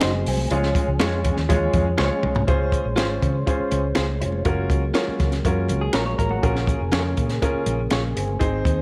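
Up front, a woody upright piano drives this short, joyful slice of uptempo 1960s-style soul at 121 BPM in Db major, carrying the accompaniment alongside a round, foam-muted fingered electric bass and a compact cocktail drum kit with a punchy kick and high-tuned snare. Behind them, a tonewheel organ holds sustained chords through a slow rotary speaker with light overdrive and audible key click, while a bright, clean electric guitar recorded direct adds compressed stabs in the background. Very quiet congas with a ringing, band-limited tone and close, dry finger snaps fill out the percussion. A drum fill at 2.0 seconds leads into the second section, where the chords move through Dbmaj7, Gbmaj7 and Bbm7. At 5.8 seconds a second electric guitar, slightly broken-up and lo-fi through a small old amp with spring reverb, slips in a brief riff, all within an uplifting, lightly reverberant studio sound.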